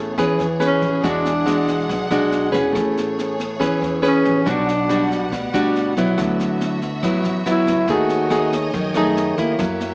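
Relaxed and romantic, this bossa nova passage is cut from a longer piece and moves in a straight, unhurried 4/4. A fingerpicked nylon-string guitar sits up front with a classical touch, and a breathy tenor saxophone carries the melody from 0.7 s to 8.6 s, its dark, whispered subtone, soft attack, scooped notes and vibrato giving it an intimate, jazz-styled voice. Behind them, a symphonic string section holds lush bowed chords with an expressive, close ensemble sound, while a woody pizzicato upright bass anchors the low end. Jazz brush drums come in at 0.2 s with a boomy kick, rim clicks and a high-tuned snare, sounding smooth in a studio room. The harmony drifts through rich chords such as Amaj9, E9 and F#m13/D#, and the recording has light reverb and a small-speaker tone.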